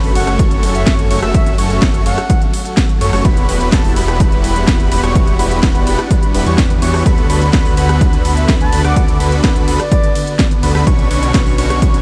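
Anthemic and emotional, this 126 BPM festival progressive house excerpt moves through F#m, Emadd9, D6 and Bmadd9 as a punchy, overdriven kick sits up front, a crisp-hatted house kit with a cracking snare drives beneath huge supersaw chord riffs and a thick detuned saw bass, a bold unison lead spins arpeggios through analog delay, a chorused, phased pad hangs in the background, and a breathy concert flute melody drifts in at 0.2 and again at 7.8 seconds, while the chords, bass, lead and pad pulse with sidechain pumping, all in light reverb.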